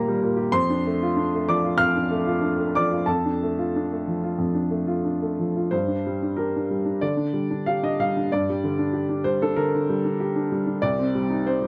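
A dry, close 1970s-style studio sound with light reverb frames this short excerpt of reflective, intimate neoclassical minimalist piano in G minor, played with a rubato feel at around 94 BPM in 4/4. A woody, natural upright piano plays solo and up front across its full 11.7 seconds, ranging from C2 to F6 and tuned slightly below standard pitch. Two statements of the same section move from Eb and Dm/F to Gm at 5.7 seconds, closing on a Cmadd9 chord.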